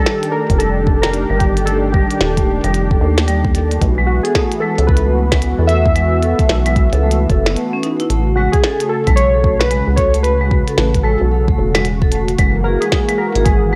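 A rubbery, saturated acid bass sits up front in this intricate, playful IDM cut from a longer piece, moving at 112 BPM in 4/4 with a 62% swing on the 16ths, in A lydian tuned to A4 = 438 Hz. Above it, warbling lo-fi synth keys carry a nostalgic, ring-modulated melody with chorus and tape echo, while a smooth, detuned sawtooth pad holds sustained chords under sidechain pumping and a bright, metallic vibraphone struck with hard mallets spins arpeggios through a filter sweep and tape echo. A deep electronic kick and a glitchy kit of tiny snare and clicky hats drive the groove through D#maj7, Bsus4, A6 and F#7, pausing for a brief break from 7.6 to 8.1 seconds, all set in a light reverb.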